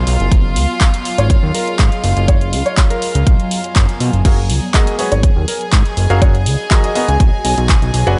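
Digital ambience gives this short cut from a longer piano house track a polished sheen that stops short of the highest treble. At 122 BPM in F# major, the euphoric, feel-good groove rests on an up-front, layered electronic kick with a punchy large-room body, alongside a small-room analog drum machine supplying crash, handclaps and hi-hat. A fat, detuned analog bass of sawtooth and square waves, with ring modulation and a filter sweep, sits up front and pumps alongside a warm studio violin section whose gut-string, reedy tone and light vibrato hold sustained chords. A dark, mellow grand piano carries the melody with audible action noise and dub echo, while a blurred, evolving granular cloud pad with its own reverb drifts in the background, also pumping. At 4.2 s a clear, worn baby grand piano adds an intimate riff, echoed and pumping, over a looping F#maj9, G#m7 and Bm progression.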